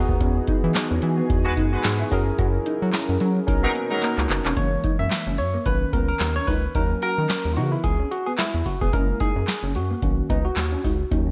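A bright, barky tine electric piano with analog chorus opens this feel-good, smooth early-eighties boogie funk cut, alongside a rubbery, bouncy square-wave bass and a shimmering pulse-width pad in the background. They are soon joined by a booming analog drum machine with deep kick, crisp snare, handclaps and metallic hats, a mellow, clean guitar riff under lush chorus, and a jingly tambourine, all in light digital ambience. A tight, clear horn section plays a second line from 1.5 to 4.3 seconds, and after a drum fill the pad stops at 4.6 seconds as the electric piano takes a solo over the swung sixteenth-note groove.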